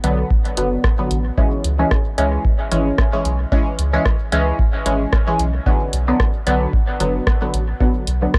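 A swung 4/4 pulse drives this deep, nocturnal dub techno excerpt, where a muted, detuned chord stab sits up front with chorus, phaser, tape grit and dub echo, pumping over a round, soft sub bass as a layered deep house kit of hi-hat and rim click echoes behind an analog kick that enters at 0.3 seconds, all captured dry and gritty while the harmony moves from Bm to C#m and back.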